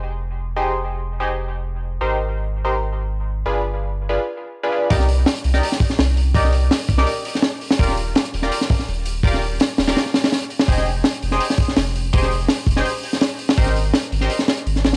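A dry, gritty cassette-tape sound frames this nostalgic, atmospheric drum and bass excerpt in C minor at 166 BPM, where a soft, round dub sub bass with tube saturation sits deep from the start. Nasal, band-passed sawtooth chord stabs, detuned and treated with chorus, phaser and dub echo, float over lush ninth chords such as Fm9, Abmaj9 and Cm9. At 4.9 seconds the drop brings in a crunchy, dark breakbeat kit with a punchy kick, high-tuned snare and hi-hat, its rolled-off top pushed up front.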